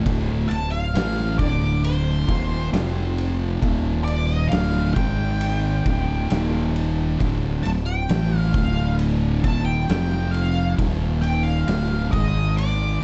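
A slow, straight 4/4 pulse at 67 BPM drags this heavy, sludgy stoner and doom metal excerpt forward from its first moment, with an oversized low-tuned drum kit sitting in the background, its punchy kick, medium-tuned snare and dark crash and ride cymbals sounding saturated and gritty in a bright stone room. Two thick fuzz guitars share a picked riff down low, distorted and set back in the mix, while a fingered electric bass with overdrive sits up front, bright, direct and growly. From 0.5 seconds an octave-fuzz lead guitar carries the melody high above, dark and picked, colored by wah, distortion and tape echo. The chords circle among D5, F5, Eb5, D minor and G#5, giving the riff a brooding, uneasy pull. Light reverb and a dark production with a rolled-off top keep the whole sound murky and heavy.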